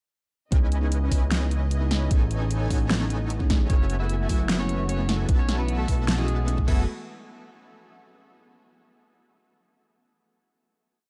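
Dark, warm production and a digital ambience frame this short, lush and bittersweet future bass piece, which runs at 151 BPM in 4/4 with a half-time feel in F# dorian, tuned to A4 = 436 Hz. It opens at 0.5 seconds straight into a drop, where an overdriven, knocking electronic kick sits up front beside a dubstep kit whose huge snare, hat rolls and crash carry their own overdrive. A fat, detuned sawtooth bass with a filter sweep follows the chord rhythm under sidechain pumping, while a supersaw stab plays airy, held open-voiced chords with syncopated pushes that throb in tempo. Glassy sine keys with chorus, digital delay and sidechain pumping add rootless, dotted-rhythm chords in the background, and a very quiet studio string section holds a pure, floating sul tasto pad over the C#m9, Amaj9#11, F#m11 and B7sus4 changes. At 3.7 seconds a bright, clean electric guitar enters with a picked, repeating riff melody in octaves, treated with digital delay and sidechain pumping, before the piece ends on a final hit at 6.9 seconds.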